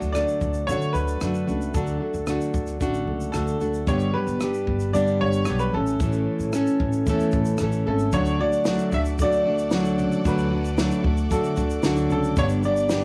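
Set in a small room ambience, this sunny, easy-going acoustic pop clip from a longer piece pairs a brilliant upright piano melody, with audible action noise and plate reverb, against up-front flamenco guitar accompaniment, very quiet full-bodied steel-string arpeggios, a thumpy gut-string pizzicato upright bass and a compact cocktail kit with punchy kick, high-tuned snare, rim click and shaker, before a distant, lush bowed string section joins with sustained chords at 8.1 seconds.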